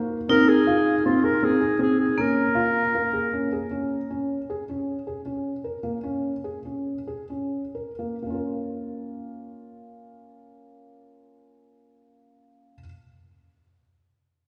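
Contemporary chamber music in an uneven 5/4 meter, this short passage cut from a longer piece feels urgent and restless. A felt-muted upright piano carries arpeggios throughout, its mellow, boxy tone sitting up front with audible action noise that lends an intimate, dark character. Over it, a clarinet in classical style plays a brief solo melody from 0.3 to 3.7 seconds, soft in attack yet roomy and distant in color. A vibraphone struck with hard mallets adds a bright, metallic second line in the opening seconds, close-miked and dry with its motor off. The music passes through three short sections and slows between 4.9 and 8.2 seconds, while a wet concert hall reverb places the listener further back in the room with a softened top end.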